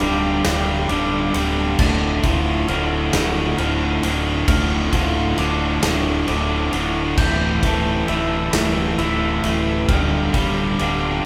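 Drenched in a wet large-studio reverb with the feel of a band playing live in one room, this brooding, cinematic post-rock excerpt in D minor moves at 44 BPM in 6/8 through Gm7/D, Dm7 and Am7/D, as a huge, punchy arena drum kit and a biting overdriven guitar riff sit up front, a second, bright distorted guitar riff lies in the background over a growling fingered bass holding D1, a ringing glockenspiel with hard plastic mallets and a very quiet, twangy lo-fi guitar through a small old amp play arpeggios, and a distant, lush bowed string section sustains chords with vibrato.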